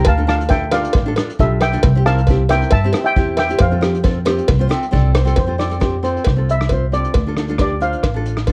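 Calypso at 135 BPM in F major, carefree and sunny, with a mellow steel pan carrying the melody through analog delay, played up front with soft rubber sticks on double seconds. Fingerpicked nylon-string guitar adds full-bodied classical accompaniment with audible finger squeak and a fill from 4.5 to 5.4 seconds, while a woody, thumpy pizzicato upright bass sits up front and a close, dry cowbell ticks alongside a small-room brush kit whose punchy kick, hi-hat and rim click carry a rolled-off top and vintage 12-bit sampler grit. Chords move from Dmadd9 through C and Fadd9 to Dm7 under a light reverb and cassette tape sheen, in a short cut from a longer piece.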